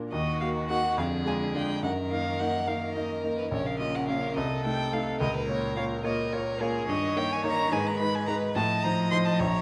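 A quick classical-period movement for piano quartet in Eb minor, this excerpt moves in 6/8 at 71 BPM with a rubato feel, urgent and dramatic in mood, and is cut from a longer piece. A clear, present grand piano sits up front as accompaniment, entering at 0.0 seconds and spanning from Bb1 to Db5. Leading the melody from 0.1 seconds, a dark, woody violin sings with vibrato between Ab4 and C6, played by one bowed player placed close to the listener. Beneath it, a second violin with a rich, smooth and even tone sounds distant in the Gb4 to Eb5 range, while a cello, also bowed with vibrato, holds a smooth-topped second line from Bb2 to F3 in the background. The harmony travels from Ebm through Bbm and Eb7/G to Abm before closing on F7/A at 8.6 seconds, all set in a recital hall with a wet reverb that lingers for about 1.4 seconds.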